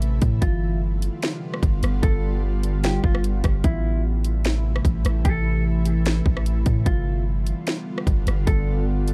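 Atmospheric cloud-rap hip hop at 149 BPM in a half-time 4/4 feel, this spacious, hazy excerpt sets an ethereal, detuned pad with chorus, reverb and sidechain pumping over a deep, sine-like 808-style bass and an overdriven trap kit of hard-clipped kick, sharp snare, rim click and bright hats, while a dark, clean, low-passed electric guitar melody with digital delay enters at 0.4 seconds over chords moving from G7 to Am and back, all in a dark digital ambience.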